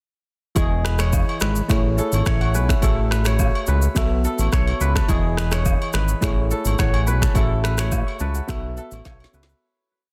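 A sunny, romantic afrobeats piece at 106 BPM in E major opens at 0.6 seconds with a straight 4/4 groove. An electronic afro-pop drum kit sits up front with a deep kick, a woody, overdriven snare, and syncopated rim clicks layered with finger snaps over shaker, while a fat, detuned sawtooth bass with a filter sweep bounces through a syncopated line with slides. Soft, round electric-piano-like synth keys push a chord rhythm in spread voicings with short fills over Emaj7, Amaj7, F#m7/A and B7sus4, alongside a crisp, ringing kora riff with delay and distant agogo bells and woodblock in a large room, before a fade-out from 7.4 seconds and a closing drum fill at 9.1 seconds.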